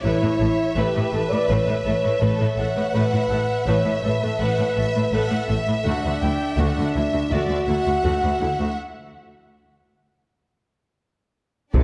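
This recording has the spacious sound of a scoring stage, where a wet reverb with a 2.0-second decay gives the orchestra a grand, enveloping bloom. It is a triumphant, heroic cinematic passage cut from a longer piece, moving at a stately 82 BPM in 4/4, with the harmony resting on Asus2 before shifting to Dadd9 at 5.9 seconds. Lush, vibrato-rich violin sections carry a focused melody and a second line above a smooth viola accompaniment that sits in the background. Distant, roomy French horns hold sustained chords at the heart of the texture, while cellos and double basses ground the bass in an even, bowed foundation. A break begins at 8.8 seconds, and the passage ends with close, dry taiko ensemble drums played with heavy sticks at 11.7 seconds, followed by a single tuba note with light vibrato.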